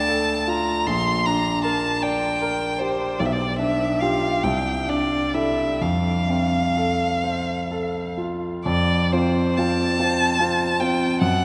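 Bathed in the long, wet reverb of a vast cathedral, this short romantic duo for violin and grand piano unfolds in F major at a slow, rubato 6/8, around 41-53 BPM by the dotted quarter, with a yearning, melancholic mood. Up front, a single bowed violin carries the melody high in its range, its tone rich and focused with vibrato. A baby grand piano, natural and sustaining, supports it from deep bass to the middle register as the harmony moves from D minor through G minor and a C chord with added sixth and ninth before settling on F near 5.8 seconds.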